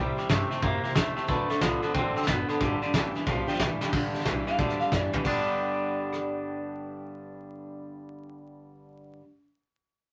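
A clean, scooped twangy electric guitar riff sits up front in this rollicking, retro rockabilly excerpt at 182 BPM with a swung feel in G major, joined by a slightly broken-up lead melody from an electric guitar through a small old amp, a full-bodied picked dreadnought acoustic with finger squeak, and a woody, thumpy pizzicato upright bass in the background, while a soft brush drum kit with a fat snare and dark cymbals plays from 0.2 to 6.2 seconds, adding fills around 3.8 and 4.9 seconds, over C, D7 and G chords in a small, roomy space dusted with vinyl crackle.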